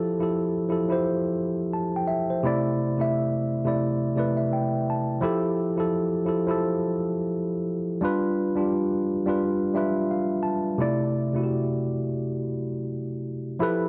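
Hip hop with a dreamy, nostalgic mood, this short cut from a longer piece features a mellow tine electric piano playing on its own, up front and slightly out of tune, its worn tone rounded off by a low-pass filter. The piano moves through Fmaj9, C69 and G7 chords with a gentle 16th-note swing and adds brief fills at 3.8 and 9.4 seconds before a new passage begins at 10.8 seconds. Light reverb and a cassette-tape character give the recording a hazy, lo-fi feel.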